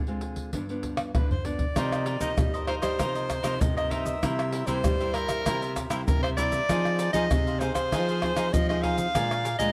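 Yearning yet lively, this samba and choro excerpt in C minor moves at a straight 98 BPM in 4/4, opening on a warm, fingerpicked classical nylon-string guitar and a close, dry kit of pandeiro, tight surdo, tamborim and egg shaker set up front. A drum fill at 1.0 seconds leads in the soprano saxophone at 1.2 seconds, a bright, close-miked jazz-style solo with vibrato that carries the melody up front. At 1.8 seconds a crisp, picked cavaquinho and a second fingerpicked nylon-string guitar playing bass in the background join under light reverb, as the harmony moves from Dm7b5 and G7 through Cm7, C7 and Fm7 to Bb7.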